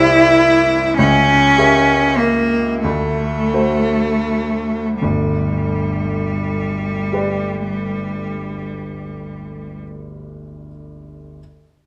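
A rubato 6/8 pulse of dotted quarters at 26-37 BPM slows through the first 5.0 seconds of this serene, warm romantic classical duo in G major, tuned to A4 = 445 Hz, cut from a longer piece, where a single bowed cello sings a rich, smooth melody with vibrato between G3 and E4 over an open, long-sustaining baby grand piano accompaniment spanning G1 to E5, moving from C through C#dim7 and D7 to a G chord at 5.0 seconds, the cello falling silent at 9.8 seconds and the piano ringing on until 11.4 seconds in a reverberant recital hall.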